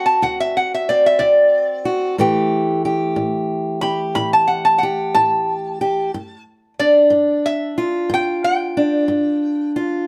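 A slow, straight 12/8 pulse at 61 BPM carries this laid-back, gritty acoustic country blues excerpt, where a metallic, nasal lap resonator guitar, played with fingerpicks and a steel bar, sings an up-front slide melody over a bright, boxy parlour steel-string guitar fingerpicked in accompaniment with audible finger squeak, moving through D7, A5 and G5 in a moderate studio reverb.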